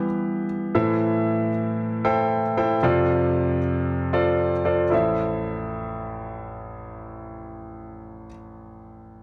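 A dry, close 1970s-style studio sound with light reverb and a small room's ambience frames this dramatic, earnest pop excerpt in A minor at 115 BPM, where a solo grand piano, clear and intimate with audible action noise, plays up front from A1 to G5 through Em, Am and F6 chords across roughly 9.2 seconds, tuned slightly sharp to A4 = 445 Hz.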